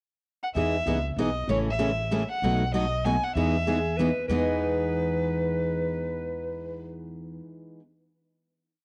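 A rich, smooth bowed violin with vibrato carries a motif-based melody from 0.4 s, with a cassette-tape colour, in this charming, lively jazz manouche waltz at 193 BPM in E major. A breathy, whispered soprano saxophone enters at 3.7 s to answer in the melody's rests, while a woody pizzicato upright bass plays root and fifth with walk-ups. A picked auditorium guitar plays rhythm on every beat, short and accented on two and three, and a very quiet, bright, boxy parlour guitar with finger squeak adds a second rhythm part, all within the light reverb of a small-room home cassette recording.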